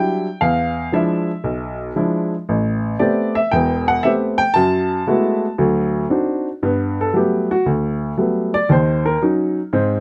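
A warm, woody upright piano carries this relaxed, swinging solo jazz excerpt in E minor at 116 BPM, its polished, up-front tone spanning from deep bass notes to the upper treble under light reverb. The harmony moves through rich extended chords such as E7b9, Am9, F#m11 and D7b9 before the music shifts to a new section at 6.6 seconds, where the piano's solo passage settles onto Gmaj9 and closes on Ebm7.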